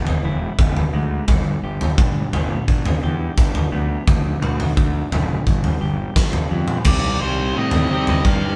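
Quiet-loud alternative rock at 86 BPM in a straight 4/4, this short cut from a longer piece feels dark and cathartic. A dark, compressed clean electric guitar picks arpeggios in the background while a growly, overdriven fingered bass with fuzz holds the low end, and a big acoustic rock kit sits up front with a fat snare, punchy kick, crash cymbal and toms ringing in a bright stone room. The chords move from E through G and D to G7 before the music lurches onto C minor at 6.9 seconds. There a double-tracked, picked fuzz guitar riff bursts in alongside a distorted octave-fuzz lead guitar carrying the melody high above. Light reverb gives the feel of a band playing live together in one room.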